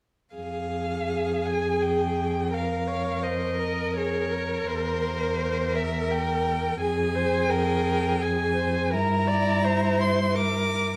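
A focused violin carries the elegiac, yearning melody with vibrato and a smooth top. Beneath it sit a rich second violin line, a cello bass that is smooth and even, and a warm, expressive viola that enters at 1.1 seconds with a soft attack and portamento. This slow romantic string quartet movement in F minor, cut from a longer piece, moves at 84 BPM in 3/4 with rubato through Fm, Bbm/F, C7/E and back to Fm before landing on Edim/G, all set in moderate recital hall reverb.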